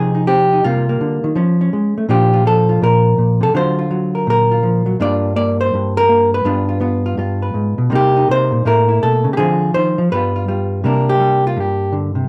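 A clean, dark hollow-body electric guitar opens this smoky, swinging fragment of a longer solo jazz piece, fingered and placed up front against a light reverb. Its chords move from Fm9 and Cm9 through altered dominants such as D7alt and G7b9, with a lilting swing feel across the line. At 10.8 seconds the harmony settles onto Csus2, heard through close, detailed microphones.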